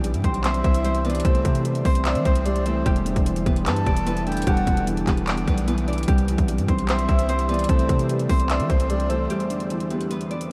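Up-front trap drums with a hard-clipped kick, metallic hats and handclaps drive this dark, hard-hitting half-time hip hop excerpt, joined by a punchy, heavy 808-style bass that drops out at 9.3 seconds, a mellow fingerpicked Celtic harp melody ringing through analog delay, a soft, boxy felt-muted upright piano under ensemble chorus, and a breathy, flute-like synth lead with vibrato entering at 0.4 seconds, all set in a dreamy mix soaked in huge ambient reverb and vinyl crackle.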